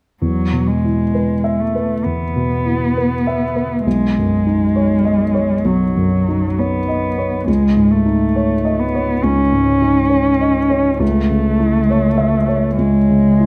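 Hopeful and intimate, this neoclassical excerpt for piano and strings moves at a rubato 67 BPM in 4/4, resting in E major and passing through E5, Badd9, C#sus2 and A/C#. A dark, mellow baby grand sits up front as accompaniment across a broad range, while a single muted cello, bowed con sordino with a veiled tone and vibrato, carries a second line in its middle register from 0.2 to 13.5 seconds. A moderate concert hall reverb gives both parts a soft sense of space.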